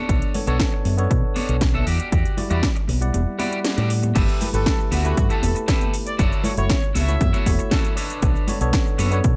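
A punchy, overdriven electronic kick and a house kit with a cracking snare, metallic hi-hats, cabasa and crash drive this sleek, cosmic nu-disco in straight 4/4, with ringing, high-tuned congas in the background and a fingered electric bass bubbling through its envelope filter. A twangy electric guitar riff on the edge of break-up, touched with subtle chorus and analog delay, rides over clean tine electric piano chords that pump against the kick and echo with delay. The kick drops out at 3.1 seconds before a band accent leads into the drop at 4.2 seconds, where a close, reedy chamber violin section with gut-string tone and light vibrato enters at 4.5 seconds with a bowed melody, all set in digital ambience in this cut from a longer piece.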